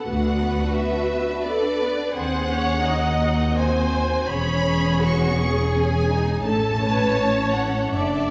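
Tender and warm, this slow romantic movement for string orchestra in C# minor moves at 84 BPM in a rubato 3/4. A distant, focused violin section carries the melody over a smooth second violin line, a close, lush viola accompaniment, and a bass of even cellos and lush double basses that enter at 0.1 seconds, all bowed with vibrato and heard from further back in a scoring stage's reverberant space.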